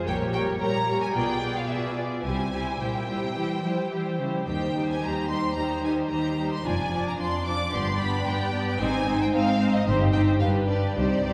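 Quick classical-period movement for string orchestra at 110 BPM, restless and dramatic, settling into C minor from 4.5 seconds. From the opening, an expressive, lush violin section carries the melody over a smooth, even second violin line, bowed viola accompaniment, a close cello section and lightly vibrato double basses, all set back in a wet concert hall with a 2.2-second reverb, in a passage cut from a longer piece.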